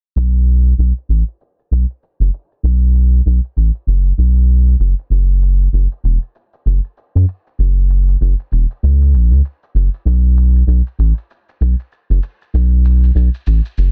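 Mystical and meditative, this organic downtempo excerpt moves in 4/4 with a swung sixteenth-note feel. A round analog synth bass carries the piece from 0.2 to 13.9 seconds, sitting up front with a deep, dark tone that blends triangle and sine character, a fast attack and long sustain, ranging from E1 to F#2. A filter sweep shapes the bass throughout, giving its sound a shifting color. Beneath it, a faint electronic shaker runs across the same span, tape-warm and re-recorded in a large room for a produced texture. The overall sound is dry, with little reverb, and the master is dense and heavily limited, with a low-pass filter that softens the top end.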